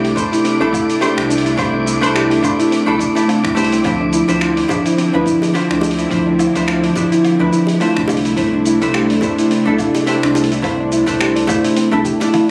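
A swung 16th-note groove at 106 BPM in 4/4 drives this smooth sunset chillout excerpt, built from a gritty, tape-toned soul sampler kit of finger snaps, hi-hat, shaker, toms and woodblock over a thumpy electronic kick, with tight, high-tuned bongos joining at 4.7 s and a drum fill arriving at 12.3 s. Up front, a dark, clean hollow-body jazz guitar plays accompaniment through digital delay, moving from C6/9 to Dm9 and back. Behind it sit silky, chorused string-machine chords, mellow triangle-and-sine pluck arpeggios with chorus and delay, a deep, round sine sub bass, and an airy, breathy wind-like texture high above, all under light room reverb and compression.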